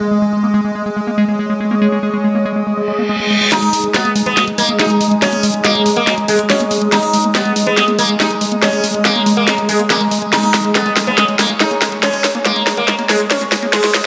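An alien, intense psychedelic trance excerpt opens with a morphing, detuned wavetable pad in the background, a soft, breathy pad, a squelchy, resonant acid bass riff under a filter sweep, and a brief downlifter, with a reverse cymbal at 2.9 s leading into 3.5 s, where a shimmering, buzzing plectrum-plucked sitar melody and an overdriven, layered electronic drum kit with a cracking snare and bright hats enter up front for a build-up with a drum fill, the whole mix set in a lush hall reverb.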